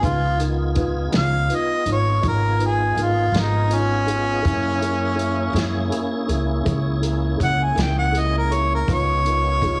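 Slow blues in 12/8 with a swaggering, laid-back mood, where a mellow harmonica with overdrive solos up front using scooped notes and light vibrato over a dark, boxy baby grand piano, a full tonewheel organ holding sustained chords, lightly overdriven, through chorus vibrato and a slow rotary speaker, a woody, growly pizzicato upright bass, and a vintage drum kit with a punchy kick and rolled-off top, the band moving between Db9 and Gb9 chords in a dry small room with a heavily compressed radio sound.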